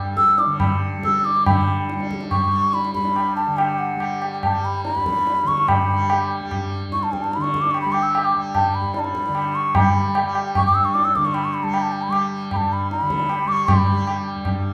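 Radiant and serene, this excerpt of Hindustani classical music in raga yaman on G moves in a straight 5/4 that speeds up from 138 to 157 BPM over its 14.7 seconds. A softly plucked tanpura lays down a buzzing, shimmering drone from the start, and a pure, hollow bamboo bansuri sits up front with crisp attacks and vibrato, reaching from F#5 to E6. Low-tuned tabla with a short ring keeps time beneath, all set in a moderate recital-hall reverb.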